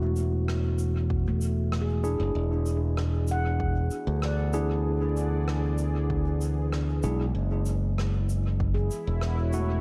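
Small-room reverb and vinyl crackle frame this spacious, meditative ambient dub cut from a longer piece in F# minor at 96 BPM, where a smooth, detuned sawtooth analog pad fades in with chorus in the background while clean tine electric piano stabs pass through a low-pass filter sweep and dub echo, a bright, up-front fingered electric bass anchors the F#m7, E7 and F#7(no3) changes, cabasa and rim click with dub echo enter at 0.2 seconds, a deep, overdriven electronic kick arrives at 1.1 seconds, and mellow, ringing handpan arpeggios played with soft fingertips join at 1.3 seconds through a low-pass filter and tape echo.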